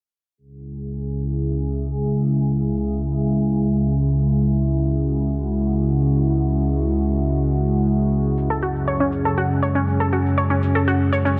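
In free time, this dark, melancholic melodic techno piece opens with a morphing, detuned wavetable pad holding sustained chords over a nasal, pulse-width-modulated analog drone, both chorused in a moderate concert hall. At 8.4 seconds a grainy tube shaker slips into the background, and at 8.5 seconds a round, warbling, up-front analog pluck adds filter-swept arpeggios with dub echo, all within a dense, heavily limited master.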